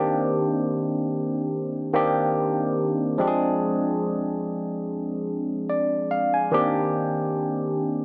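A barky, clean tine electric piano plays alone and up front through a phaser, drifting from Cm9 to Dm7b5 and back in a longing, sensual slow R&B fragment in C minor at 72 BPM, with a light swing on the sixteenths and a touch of light reverb.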